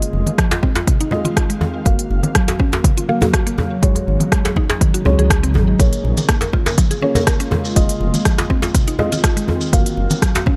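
An overdriven, deep electronic kick sits up front in this driving, earthy afro house excerpt, joined by crisp hats and rim clicks from an afro-pop kit, a dark, rumbling detuned saw bass that pumps to the sidechain, cracking djembe with metal rattles, quiet congas, woody mallet-like synth pluck arpeggios with chorus and delay, soft felt-muted upright piano stabs with audible action noise, and an ethereal pad of sustained chords in the background, while a grainy, distant shekere enters at 5.8 seconds.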